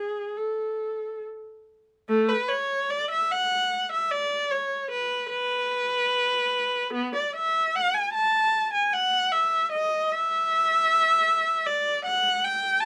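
In an unhurried triple metre around 75 BPM, the beats stretch and give with free rubato, lending this baroque-style suite movement in A major a flowing, radiant character. A single bowed viola plays alone and up front throughout, its warm tone shaded by vibrato and expressive portamento as it ranges from A3 to A5. A brief opening phrase gives way at 2.1 seconds to a longer passage that runs until the cut at 12.9 seconds, all set in a light reverb.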